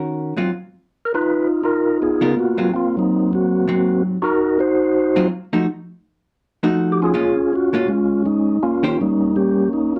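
A dark, compressed hollow-body jazz guitar opens this swinging, soulful jazz excerpt in Ab mixolydian at 163 BPM, comping up front through chords such as Db13, Ab13 and F7b9. At 1.1 seconds a mellow, flute-like tonewheel organ takes the melody, its key click and third-harmonic percussion spun through a fast rotary speaker, while the guitar drops out at 9.0 seconds. A moderate club reverb and a dark, warm production give the pair an intimate, late-night glow.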